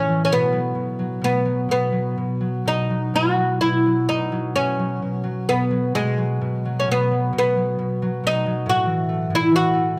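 Set in a moderate recital-hall reverb, this short passage from a longer Celtic slow air in a freely rubato 6/8 feels nostalgic and pastoral, with a bright, woody, plectrum-plucked fretless oud on double strings carrying the melody up front while a warm, ringing, fingerpicked concert harp accompanies low beneath it, the harmony resting on B5 before shifting to A5 at 8.7 seconds.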